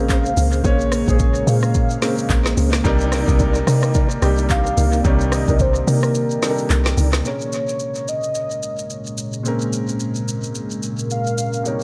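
A deep, round log drum bass with a fast-attack, decaying FM tone anchors this deep, soulful, swung amapiano excerpt until 7.2 seconds, beneath an up-front deep house kit of deep kick, woody snare, smooth hats, handclaps, rim click and shaker whose kick falls silent between 6.2 and 7.3 seconds, while a velvety sawtooth synth lead with chorus, vibrato and tape echo carries the melody over polished grand piano, a dark, detuned ambient pad pumping under sidechain, and soft, flute-like tonewheel organ stabs with key click and fast rotary speaker in the background until 7.1 seconds, all set in an echo-heavy mix with light reverb.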